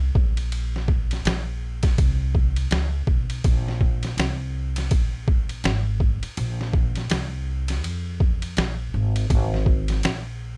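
Built on a swung sixteenth-note groove in 4/4, this short excerpt of cool, mellow jazz-hop drifts at an unhurried hip hop pace. A sampler-style trip hop drum kit enters at 0.2 seconds, its compressed, pitched-down sound muffled, with a thumpy kick, a medium-tuned snare, hi-hat and ride cymbal sitting up front. Underneath, a pizzicato upright bass with steel strings carries the low end from the very start, its woody, dark tone moving between Ab1 and F2. The bass is also placed up front, giving the pair an intimate, close feel. The room is dry with little reverb, and the music moves from its opening section into a second one at 3.4 seconds before the drums stop at 10.2 seconds, just ahead of the bass.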